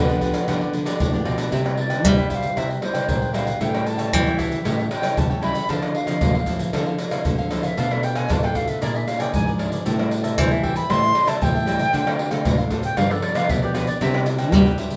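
Festive and joyful, this samba and choro excerpt at 115 BPM in C major opens with a raspy, growling tenor saxophone for the first second before an airy, reedy wooden flute with vibrato carries the tongued melody from 1.8 s, over a crisp picked cavaquinho, a full-bodied fingerpicked nylon-string guitar with finger squeak, a woody nylon-string guitar bass line with old strings, and up-front maracas, pandeiro, tamborim and tight surdo, set in a wet studio reverb.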